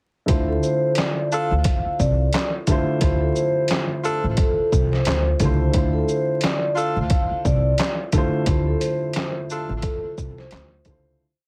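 Boom-bap hip-hop at 88 BPM in D minor, tough and dark, built on a swung 4/4 hook that rests on a Dm7 chord and fades out from 8.5 seconds. A sampler-style trip hop kit, compressed, pitched down, muffled and overdriven, thumps up front with a sparse beat of quarter-note hi-hats, kick, shaker and a snare layered with handclaps. Alongside it, a woody pizzicato upright bass loops a deep line with muted ghost notes and chromatic approach notes, and a mellow, vintage upright piano pushes spread chords like a sampled loop. A soft-mallet vibraphone rings a short looping melody with slow motor vibrato, a tight jazz saxophone section adds short stabs with tape echo from 1.3 seconds, and the mix carries a heavily compressed radio sound, vinyl crackle and light reverb.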